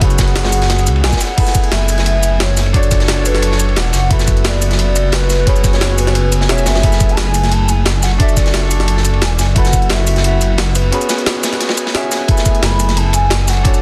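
Melancholic and rolling, this liquid drum and bass passage moves at 176 BPM in F# minor, cut from a longer piece and sitting inside a drop throughout. A hollow, woody clarinet-like synth lead carries the melody with a soft attack and vibrato, dressed in lush chorus and digital delay. Beneath it, a bright, brilliant grand piano with long sustain plays accompaniment, while a dark, nasal chamber string section holds bowed chords in the background, pumping under sidechain compression. The deep, rumbling detuned saw bass sits up front with a beating, saturated edge, anchoring chords that drift from C#7sus4/F# through F#m11, Dmaj7 and B7sus4/F#. Three drum layers stack together: a crunchy breakbeat kit with dark, rolled-off ride and snare, a gritty, pitched-up jungle sampler kit with a high-tuned snare, crash, hi-hat and shaker, and an overdriven, knocking electronic kick that drops out at 9.8 seconds, stays out through the brief break, and returns at 12.3 seconds. 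The small room ambience and dense, heavily limited master keep the whole mix tight and loud.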